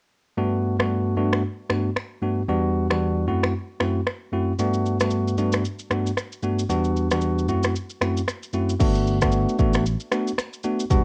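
A bell-like, clean tine electric piano with a cassette-tape colour opens this sunny, joyful afrobeats excerpt at 114 BPM in G major, accompanying with Gmaj9, Em7 and F#m7b5 over a swung, produced afro-pop drum kit of deep kick, rim click, finger snaps, shaker and crash, until a growly fingered electric bass joins at 8.8 s, all in a light-reverb home cassette recording.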